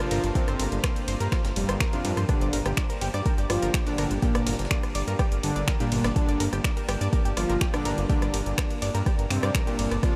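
Dramatic and driving, this melodic techno passage in G minor runs at 124 BPM in a straight 4/4. An overdriven electronic kick sits up front with an overdriven deep house kit of finger snaps, hi-hat, ride and rim click and a gritty, very quiet breakbeat-style kit, all under a thick, detuned sawtooth bass that pumps to the sidechain. A fat, mellow analog lead with vibrato and analog delay carries the melody over a round pluck arpeggio drifting through tape and diffuse delay, a moody pad, a bold polysynth line and punchy brass stabs, while a reedy chamber string section adds a faint texture until 2.3 seconds, when the harmony moves from Bbadd9/G to Gm inside a dreamy, reverb-soaked mix.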